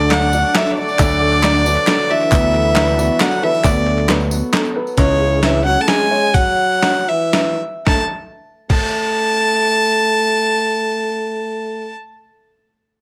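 A straight 3/4 pulse at 108-136 BPM, slowing between 5.0 and 7.9 seconds, carries this yearning, bittersweet indie folk excerpt with a building arrangement: an earthy, up-front fiddle with plate reverb sings the melody over gritty, pitched-down boom bap drums, a bright picked electric bass, crisp background handclaps, a jingly tambourine, a very quiet woody acoustic guitar, a boxy, slightly detuned upright piano playing arpeggios, a mellow baby grand piano and a sul tasto chamber string section holding faint chords, while a distant, roomy trombone enters at 2.1 seconds with a second line over D, Bm7/D and C#m before the music thins to fiddle and trombone alone.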